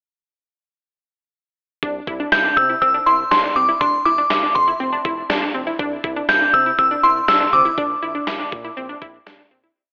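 Heard through a narrow, telephone-like filter and bathed in a lush hall reverb, this short, bright and upbeat synth-pop piece starts at 1.8 seconds with a punchy, detuned unison pluck ostinato echoed by digital delay, a dark, sustained synth bass pulsing in eighth notes, and a gated 80s digital drum machine with a thumpy kick and an overdriven, gated snare. Up front, a crystalline FM synth bell with chorus states call phrases of a motif-based melody. The piece fades out from 7.8 seconds.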